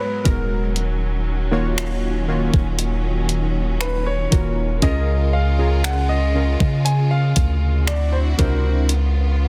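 Longing and sensual, this slow contemporary R&B excerpt moves at 59 BPM in 4/4. An intimate grand piano with audible action noise carries the melody through digital delay, over detuned sawtooth analog keys with chorus and a filter sweep, and focused bowed strings holding sustained chords with vibrato. From 0.3 seconds a deep, dark 808-style bass with long sine decay and a crisp, sampler-style drum machine of thumpy kick, hi-hat and finger snaps sit up front, with soft clipping on the snare, in a dry, dense, heavily limited mix as the harmony drifts from G#m9 through D#m7 and A#m7/C# to D9 and C#7.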